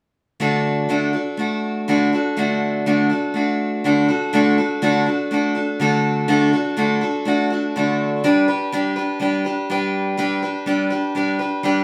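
A picked steel-string acoustic guitar opens at 0.4 seconds as the solo voice in this short rock cut from a longer piece. It moves at 123 BPM in a straight 4/4, centred in D major and tuned slightly below standard pitch, with the harmony resting on D before shifting to G at 8.2 seconds. The guitar sits up front with a bright, parlour-sized tone and fresh strings, and finger squeak is audible as it ranges from D3 to B4. A new section begins at 4.3 seconds and carries through to the end at 11.8 seconds. The studio reverb is wet, with an RT60 of 0.6 seconds, and the recording has the feel of a band playing live in one room, giving the hopeful, open-road mood an easy, unforced presence.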